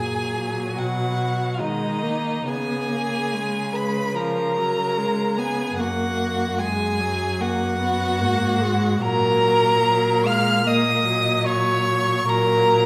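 A string quartet begins together in a lyrical, tender, slow romantic movement in F# major at 73 BPM, played with rubato: a clear, focused first violin sings the melody up front, and a second violin adds an expressive line with portamento. Beneath them, the viola, soft in attack, carries the accompaniment and the cello a smooth, even bass, both rich and close, with all four bowed with vibrato. The harmony moves from F# through B and C#7 back to F#, reaching F#/A# at 9.0 seconds, in a wet concert hall reverb, the passage cut from a longer piece.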